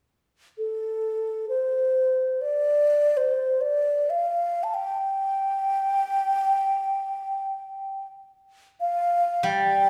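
Heard from further back in a reverberant recital hall, this graceful, wistful excerpt of Chinese traditional chamber music unfolds in free time as an airy bamboo xiao, up front with a straight tone and crisp attack, sings an expressive melody between A4 and A5 from 0.6 seconds, joined at 9.4 seconds by a silvery, ringing steel-string zither played with fingerpicks, which sounds G3.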